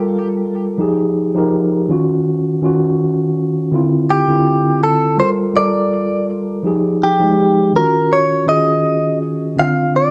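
A mellow tine electric piano opens this sensual, longing R&B fragment, laying down warm ninth chords from Gm9 through Fm9 and Ebm9 to Dm9 at a relaxed 82 BPM in 4/4, with a light sixteenth-note swing. At 4.1 seconds a clean, direct-recorded electric guitar enters with the melody, its picked tone bright, twangy and compressed, sitting up front beside the keys. The piano stays rounded and intimate, as if heard through its own built-in speakers, while the guitar carries the tune in a higher register above it. Both parts share a cassette-tape coloring and a plate reverb, set in a damp, close room that gives this home recording its hazy, late-night character. The harmony cycles back to Gm9 before settling on a Dm7 near the end of the cut-off passage, which is tuned slightly sharp of standard pitch at A4 = 442 Hz.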